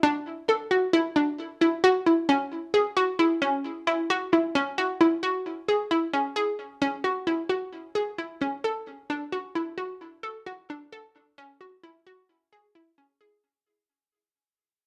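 Intricate and bright, this progressive instrumental fragment in 5/4 features a lone analog pluck, round and detuned with a ring-modulated edge, a filter sweep and a fast attack, treated with chorus and digital delay up front in a small room. It plays from 0.0 to 13.5 seconds, with the music fading out from 4.6 seconds onward.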